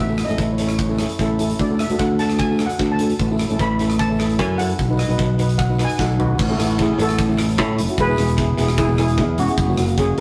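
A shimmering, metallic lead steel pan carries the melody through a tape echo from the very start, over a bright, growly fingered electric bass that sits up front, in this festive, bouncy calypso cut from a longer piece. A second steel pan, mellow and dark under soft rubber sticks, plays the accompaniment, while a big rock drum kit with a punchy kick and an airy, polished sound drives the beat and a very quiet, raspy guiro adds texture. The lead pan takes a solo until 6.4 seconds, when a drum fill starting at 6.0 seconds leads into a new section, all within a rough rehearsal-room sound with stone-room reverb and saturation.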